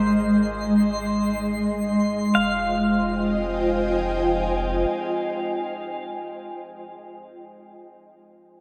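Reflective and serene, this short ambient fragment in F minor drifts in free time, cut from a longer piece and bathed in a vast cathedral reverb with a long seven-second decay. An ethereal, airy pad sits up front for the whole 6.5 seconds, holding sustained chords built from detuned, unison waveforms with a sub-octave beneath, softened by ensemble chorus, tremolo and its own reverb. A bright, clean electric pedal steel guitar carries a slide melody played with fingerpicks, shaped by volume swells and compression and trailed by delay. Underneath, a deep, round sub bass in sine tone holds the low end until 4.9 seconds, while a twinkling granular texture adds a sparkling, octave-up shimmer high above until 2.4 seconds. The harmony rests on Ab before settling onto Fm7 at 2.4 seconds, giving the passage a gently suspended, contemplative glow.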